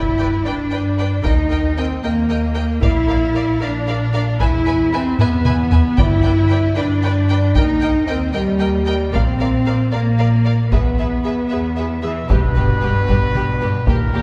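A huge, bright impact and a timpani hit open this triumphant, majestic orchestral film cue in 6/8, over dark, distant French horn chords, a rich cello section, a focused double bass section and soft, lush second violins in the background. A warm, expressive violin melody with vibrato and portamento soon enters over woody violas, and a hard-hitting taiko ensemble drives in from 1.2 seconds, with a drum fill just before the timpani returns. A clear solo trumpet adds stabs from 12.0 seconds as another impact lands, all set back in a roomy scoring-stage reverb.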